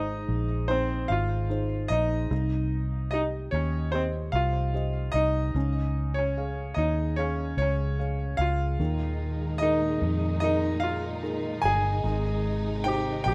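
A clear, up-front concert grand piano carries the melody in this heartfelt, hopeful pop ballad excerpt, over a felt-muted upright piano whose soft accompaniment comes with audible action noise, a dark, round, foam-muted electric bass that sits punchy and up front in the mix, and a lush bowed string section that enters at 8.8 s with expressive vibrato, all in a rough home-demo mix with studio reverb.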